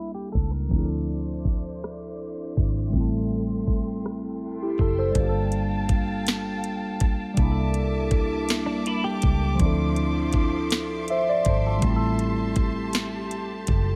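Slow six-eight R&B in G dorian at 54 BPM, with a late-night, yearning mood, heard as a short cut from a longer piece. A mellow, up-front tine electric piano carries the accompaniment throughout, coloured by a phaser, while a dark, foam-muted fingered bass with a round, amped tone holds down the low end. An electronic, produced drum kit sits up front with a knocking kick, sharp snare, rim click and metallic hi-hats, entering at 0.3 seconds. A lush bowed string section with gentle vibrato joins at 0.7 seconds to sustain chords softly beneath, and a clean, compressed electric guitar adds a brief second line at the very start and again around 8.7 seconds. A filter sweep runs through the opening section while the harmony moves from C13 through Dm9 and Am7, then on through Gm9, C13, Dm9 and Am7, all in a digital ambience.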